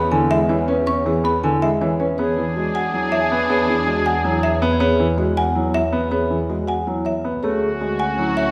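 A worn, up-front baby grand piano, sharp, dry xylophone arpeggios and a rich bowed double bass section open this hypnotic, bright minimalist classical piece in 7/8, joined at once by a woody background marimba carrying the melody and mellow, ringing vibraphone arpeggios, while a distant oboe with light vibrato and a lush violin section holding sustained chords come in at 2.2 s and return at 7.4 s, set in a moderate scoring-stage reverb.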